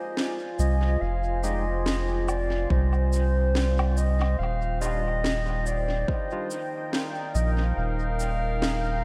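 A meditative, deep slice of ambient dub at 71 BPM in F dorian, built on a slow shift from Fm7 to Ebadd9, with a dark, distant clarinet carrying the melody through dub echo over a moody, detuned pad thick with chorus and its own reverb. A round, up-front sub bass enters at 0.6 seconds beneath a woody, overdriven electronic snare with cabasa and woodblock, while a barky, bright tine electric piano adds faint stabs in the background and an overdriven electronic kick drum thumps from 2.7 to 6.3 seconds. The whole mix is dreamy and soaked in a lush hall reverb.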